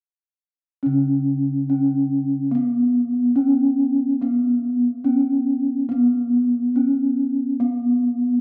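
A bronze gamelan-type metallophone carries the melody in this short ceremonial fragment, its ringing tone struck with padded disc mallets for a mellow, soft attack, and its paired tuning producing shimmering beats that sit up front in a boxy small-room sound. A second bronze metallophone enters at 0.9 seconds just beneath it, playing an accompanying line in a lower register with an airy, softer quality. The melody part moves in a narrow range around the upper edge of the accompaniment, and both ring together in a steady, straight 4/4 until 8.4 seconds. A moderate reverb lends a sense of space, and the overall production is dark and warm. The piece feels ceremonial and shimmering, a glimpse of a longer piece.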